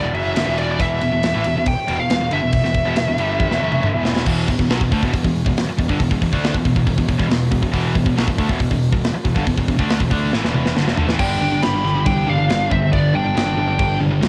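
A straight 4/4 pulse at 138 BPM drives this dark, heavy metal passage in E minor, cut from a longer piece and captured as a home recording on cassette, with an up-front, polished drum kit in a big, airy room with sparkling cymbals, a tight kick and drum fills. Beneath a dark, high-gain lead guitar melody, a bright, very quiet high-gain guitar and a tight distorted guitar in the background play the riff alongside an overdriven fuzz bass, and a thick, double-tracked fuzz guitar joins at 4.3 seconds. The lead returns at 11.2 seconds with a softer second line behind it as the harmony moves to G5.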